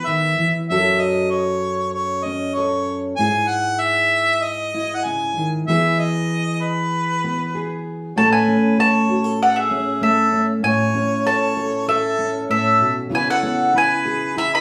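The mandolin stands out most, arriving at 8.2 seconds to carry the melody high and up front with a woody, double-strung picked tone. This is a pastoral acoustic folk piece for a duo or small band, moving at a steady, straight 97 BPM in 4/4, cut from a longer piece. Before the mandolin enters, a harmonica with light vibrato and a smooth top takes a classical-style solo from the start, then continues as a second line. Underneath, a fingerpicked steel-string acoustic guitar with fresh strings plays accompaniment throughout, its auditorium body giving it a warm tone. The opening passage moves through E, F#m, C#madd9/G# and back to E, and the mandolin's section shifts to A before settling on C#m7. The players share one room, and a wet studio reverb adds a short halo around them.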